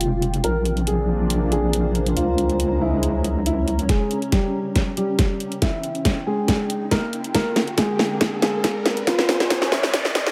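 Heavy, aggressive wobble dubstep in half-time at 139 BPM, where a saturated, up-front wobble bass and a detuned, phaser-treated unison pad open over a huge-snared drum kit and a blurred granular cloud pad, a dark, boxy grand piano carries the melody through tape echo and filter sweeps from 0.4 seconds, and after the bass drops out at 3.9 seconds a knocking electronic kick joins a drum fill and build-up that a background riser and noise sweep push toward the end of this cut from a longer piece.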